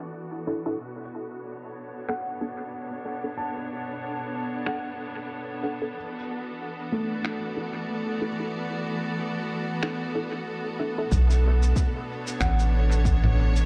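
A lush, bowed string section sits up front in this hazy, deep ambient dub excerpt in B minor at 93 BPM, holding sustained chords that move between E7sus4 and Bm7 beneath a filter sweep that runs until 11.1 seconds. Sawtooth, filter-plucked chord stabs with chorus and dub echo hover in the background, and from 2.1 seconds a soft, felt-muted upright piano plays intimate arpeggios with audible action noise. Alongside the piano come muffled, pitched-down finger snaps, cabasa and congas, both parts carrying dub echo, before a round, dark analog bass and an overdriven kick drum with a large-room sound arrive at 11.1 seconds, the whole mix shaded by a low-pass filter and light digital ambience.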